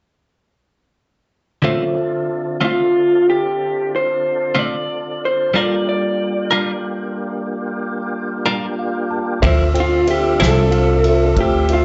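In a slow, straight 12/8 sway, this brooding, mournful blues excerpt is cut from a longer piece. It opens at 1.6 s on a bed of picked, compressed clean electric guitar, a tine electric piano pulsing with medium tremolo and slapback echo through a combo amp, and a tonewheel organ holding sustained chords with key click, chorus vibrato and a slow rotary speaker. At 2.6 s the melody arrives on an up-front electric guitar through a small old amp: dark, slightly broken-up and lo-fi, with its own slapback echo. The electric piano slips in a fill just before 9.4 s, when the clean guitar takes a solo and the harmony moves to a richer minor ninth chord. At that moment a growly, woody pizzicato upright bass on steel strings and a natural country drum kit join in, with a punchy kick, medium-tuned snare and ride cymbal in a small-room sound. The whole performance sounds like a live gig heard through the venue's PA, soaked in club reverb and dulled at the top end.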